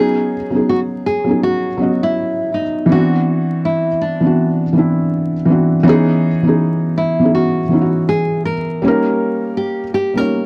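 A soft, mellow felt-muted upright piano with audible action noise sits up front, outlining B69, D13, C#m9 and D#7 beneath a fingerpicked nylon-string guitar melody with a fresh, classical tone, both low-pass filtered, in this cosy, dreamy hip hop excerpt at 81 BPM with a 16th-note swing in B major, coloured by gritty hardware grit, vinyl crackle and a moderate studio ambience.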